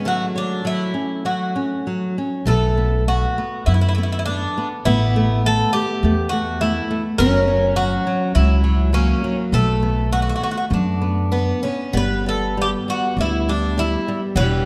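A rubato feel stretches a 101 BPM pulse in 4/4 through this longing, mournful fado-style ballad in B minor, tuned to A4 = 438 Hz. The Greek bouzouki carries the melody up front, its double strings sounding mellow yet metallic, with some strings doubled at the octave. Beneath it, a picked twelve-string archtop guitar plays a boxy, shimmering second line with audible finger squeak, while a flamenco guitar fingerpicks a warm accompaniment. The passage opens with a break over F#m7, and at 2.5 seconds a pizzicato upright bass enters up front, woody, dark and thumpy on steel strings, as the chords move through B5, Asus2, F#7 and Bm7 to G. A moderate concert hall reverb with a 2.3-second decay surrounds the ensemble, and lossy compression artefacts mark the sound of this passage, which is cut from a longer piece.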